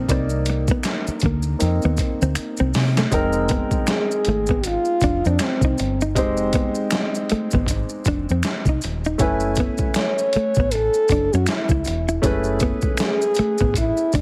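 A heavily compressed, radio-like sound with light reverb and small room ambience wraps this late-night, introspective neo-soul and R&B fragment, opening with a woody upright piano solo and a drum fill from 2.4 to 3.1 seconds on a gritty, sampler-style boom bap kit with a thumpy kick. A round, punchy fingered electric bass sits up front with a dark, clean hollow-body jazz guitar playing a second line and dry maracas and finger snaps, all over a swung sixteenth-note feel and chords moving from Cm9 to Fm11 and then F#m11. At 3.9 seconds a mellow French horn enters up front to carry the melody with classical-style vibrato.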